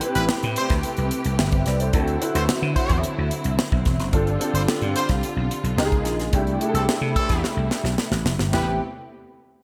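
A growly, punchy slap bass sits up front in this nocturnal, bittersweet slice of polished 1980s jazz-funk pop, locking in with a tight, dry funk drum kit whose fill runs from 7.4 to 8.5 seconds. A grand piano with audible action noise and ensemble chorus plays accompaniment, a clear jazz-style horn section carries a second line with light vibrato, and a veiled, con sordino string section holds dark sustained chords in the background as the harmony moves from Am9 through D9 and G7sus4 to C6. Bright digital production and a moderate plate reverb with small room ambience frame the sound.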